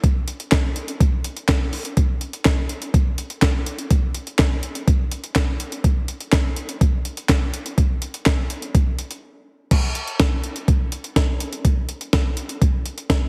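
A gritty, pitched-up breakbeat drum kit opens this wistful, nostalgic pop fragment at 124 BPM in a straight 4/4, its thumpy kick, medium-tuned snare, hi-hat, handclaps and crash cymbal sitting up front with a sampler-style, compressed character. A brief break at 9.2 seconds leads into a new section at 9.7 seconds, and the kit carries on until 13.2 seconds. Light reverb and a heavily compressed, radio-like sound give the whole piece a hazy, bygone feel.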